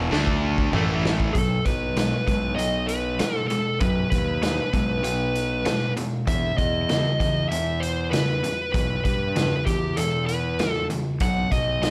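A dark, compressed fuzz lead guitar carries the melody from 1.3 seconds, its distorted tone marked by slapback echo, in this swaggering, brooding classic rock passage cut from a longer piece. Up front, a raw garage drum kit with a tight kick and a gritty, saturated character opens with a fill, while a fingered electric bass growls with overdriven fuzz and two picked rhythm guitars, a bright cranked stack and a hollow-body semi-hollow, play riffs in the background. Light reverb adds a touch of space as the chords move from D5 and A5 to B5 and E5.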